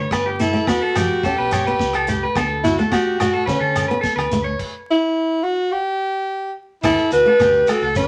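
Highlife guitar band in D major at 107 BPM, sunny and joyful, with a breathy, whispered alto saxophone carrying the melody up front from 0.4 seconds over a bright, twangy electric guitar at the edge of break-up playing spring-reverbed arpeggios and a boxy old ladder-braced acoustic guitar picking accompaniment. Underneath, a round, punchy fingered electric bass sits with a damped 70s drum kit of dark cymbals and tight kick, while ringing agogo bells, high-tuned congas struck with hard hands and a grainy, distant shekere fill out the percussion. The chords move through Gadd9, a rootless Em and D before a stop from 4.6 to 6.8 seconds, and the cut returns to D in a new section, all set in a studio reverb with vinyl crackle.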